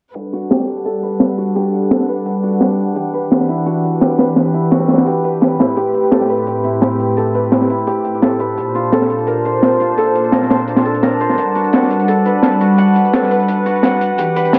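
A mellow, ringing Celtic harp plays fingerpicked arpeggios through a low-pass filter, dub echo and a filter sweep, over sustained bowed chords from a dark, reedy gut-string chamber ensemble and a crunchy, saturated breakbeat kit with a high-tuned snare and rolled-off top, alongside a very quiet, gritty electronic hi-hat, in this dreamy, lush liquid drum and bass excerpt set in a moderate hall reverb as the harmony moves from Gmaj9 through Em9, Am9 and Bbmaj9 back to Gmaj9.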